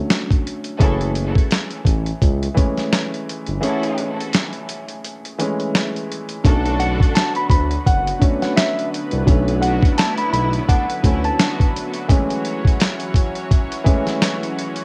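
Gritty, pitched-down sampler drums with a thumpy kick sit up front in this reflective boom-bap hip-hop excerpt at 85 BPM in B minor, swung on the sixteenths and carried by a dark, short-sustain grand piano, a smooth, nasal synth bass, and clear bowed string stabs that enter with tape echo at 0.8 seconds. A break arrives at 3.6 seconds, and at 6.4 seconds a lush, warbling unison pad with chorus comes in, joined by a clean, fingered electric guitar melody in a high register. The home cassette recording sits in a digital ambience.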